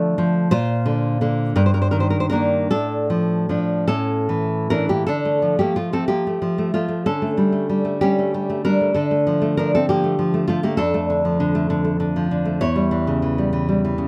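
Intimate and passionate, this short excerpt from a romantic piece for solo classical guitar unfolds in D minor with a flexible, rubato feel in 6/8, the pulse drifting between 49 and 68 BPM in dotted quarters. A single fingerpicked nylon-string guitar carries everything, its dark, full-bodied tone sitting up front and spanning from a low E2 to C#5. The opening passage moves through Dm, Bb and Eb/G before settling on A at 3.9 seconds, and a second passage begins at 5.1 seconds, circling Dm and A7/D. It closes on a tense C#dim/E at 12.6 seconds, as if reaching for what comes next. Close, detailed miking with little reverb keeps the instrument present and immediate.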